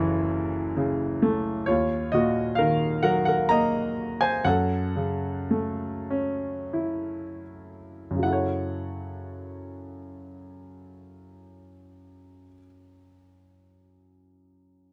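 A lone grand piano opens this short, melancholic fragment of a longer classical piece, its clear, smooth tone sitting up front with a faintly vintage character. Played in a lyrical 3/4 with free rubato, the music has a reflective, unhurried feel, and the notes carry a short sustain that keeps each phrase distinct. The piano ranges from deep bass notes up into the upper treble, moving from a minor seventh harmony at the start to a minor chord with an added colour at 1.7 seconds. Through the passage that follows, the pace gradually slows, stretching the phrases until 8.2 seconds, and along the way the opening harmony returns at 4.4 seconds. A closing passage then carries the mood forward in a room with only a light touch of reverb.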